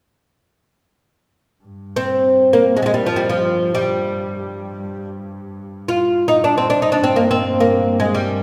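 In free time, this melancholic, soulful Arabic passage in G maqam kurd, cut from a longer piece, opens with a single bowed double bass holding a clear, focused drone on G2 with vibrato from 1.6 seconds, set back beneath the melody. At 2.0 seconds a fretless oud enters up front, its plectrum-plucked double strings sounding bright and woody as it carries the melody between F3 and F4. A wet church reverb with a long 2.8-second tail surrounds the performance, giving it the open resonance of a large hall.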